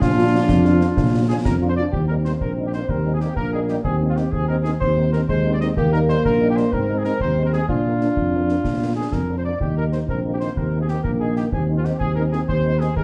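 A rousing, festive military-style march for wind band in a straight 6/8, cut from a longer piece, opens with a bright trumpet section carrying the melody over dark, sustained trombone chords and a roomy tuba bass placed up front. The trombones drop out at 1.8 seconds, and at 1.9 seconds a warm, punchy euphonium enters with a second line sung with light vibrato. A mellow French horn section supplies accompaniment, sitting distant in the background. Acoustic concert snare and bass drum keep the march moving in a live room. The harmony cycles through Bb, Eb and Ab, and the whole ensemble is heard from further back in a wet studio reverb, giving the classical-style sections a ceremonial sweep.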